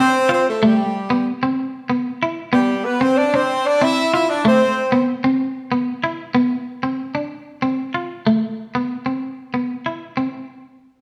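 A punchy, tight horn section carries the melody in octaves with a light vibrato over a twangy, picked clean electric guitar, opening this joyful, danceable highlife excerpt at 126 BPM in a straight 12/8. The horns drop out at 5.0 s, leaving the scooped guitar to carry the second section through chords such as Bm, F5 and Amadd9 until 10.3 s. Both parts sit up front in a band recorded live in one room, wrapped in a wet stone room reverb.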